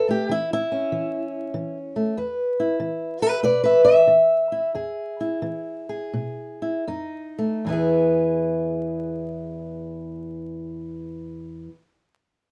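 A fingerpicked steel-string acoustic guitar plays alone and up front in this gritty, swaggering acoustic country blues in E major, swinging in 4/4 at 76-96 BPM and slowing down between 2.2 and 7.6 seconds as it moves from A to E and through an F7 back to E, all heard through moderate studio reverb and vinyl crackle in a rough home-demo mix cut from a longer piece.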